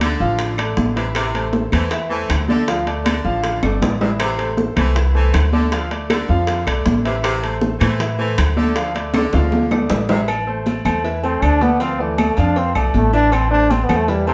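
A driving, danceable salsa at 158 BPM in A minor opens at once with a dark, thumpy pizzicato upright bass with gut strings up front, a clear baby grand piano with audible action noise accompanying over alternating Dm and Am chords, and a tight, edgy saxophone section with light vibrato carrying a low second line until 10.2 seconds. Underneath, thin-skinned, damped, high-tuned congas, tight bongos and cowbell, ringing metal-shell timbales with agogo bells, and woody claves set back in the background drive the groove, with drum fills arriving around 3.6 and 9.1 seconds, inside a moderate room reverb. At 11.2 seconds a bright, roomy trombone takes the solo melody up front.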